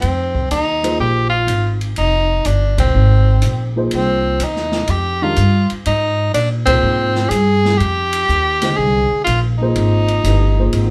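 Swung eighths in 4/4 drive this cool, searching modal jazz excerpt over a single Fm9 chord: a bright, punchy tenor saxophone sings a forceful, up-front lead with vibrato above woody pizzicato upright bass and an open jazz drum kit with dark cymbals, medium-tuned snare and boomy kick, while a mellow, worn, slightly detuned upright piano joins at 0.8 seconds and the band hits shared accents at 2.7 and 6.6 seconds, all captured live in a moderate room ambience.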